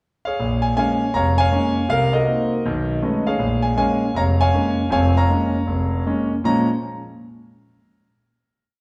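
Moody and late-night in character, this is a brief, complete solo jazz piece for concert grand piano in 4/4 with a swung eighth-note feel. The piano enters at 0.3 s with a short pickup and plays until 6.7 s, carrying both the stride accompaniment and a motif-based melody built from song-like phrases, set in close voicings. Its tone is clear and natural, with a deep bass and a long sustain, and it sits up front in the mix. The harmony moves from Bbm7 through Cm7b5 and B13 before returning to Bbm7, and a final chord closes the piece. A recital hall reverb, as in a church or concert hall, surrounds the instrument with a lingering, spacious tail.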